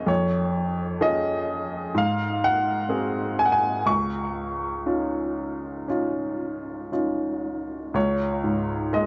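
Flowing in an unhurried rubato 4/4, this brief, peaceful fragment of lyrical classical solo piano places a clear, woody upright piano up front, its intimate tone carrying audible action noise and analog delay as it moves gently from Db/F through Ab7 and Dbadd9 to a closing Db5 at 8.0 seconds, all set in a wet studio ambience with the softened top end of cassette tape.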